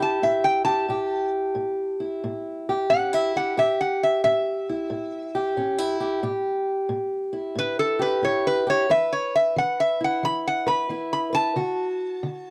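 A lap resonator guitar, played with fingerpicks and a steel bar, carries the melody with a metallic, nasal slide tone, sitting up front and taking a solo through the whole 12.5-second excerpt of this rollicking, soulful acoustic country blues. Beneath it, a boxy parlour-style steel-string acoustic guitar fingerpicks the accompaniment, moving from A7 to E5 at 8.9 seconds and D at 11.6 seconds, in A mixolydian at 90 BPM with a swung 4/4 feel. The sound is dry and close with light reverb, like a 1970s studio recording, with tuning set slightly below standard at A4 = 439 Hz.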